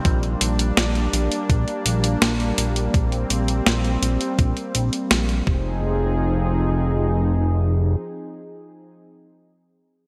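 A bright 1980s-style digital production bathed in a lush hall reverb frames this short, nocturnal synthwave fragment, cut from a longer piece and moving at 83 BPM in 4/4 with a straight feel in F dorian. A smooth, detuned sawtooth pad holds sustained chords throughout, its soft attack and long release colored by chorus and a pumping sidechain. Underneath, a fat, saturated analog bass with a fast attack sits up front, carrying a filter sweep through the first 5.8 seconds before continuing until 8.0 s. A thumpy electronic kick and a clean 12-bit drum machine with a medium-tuned snare and hi-hat give a tape-tinged, sampler-style pulse. The drums drop out between 5.4 and 5.6 s as the harmony moves from Gm/Bb to Fm7, leaving pad and bass to carry the moody closing stretch.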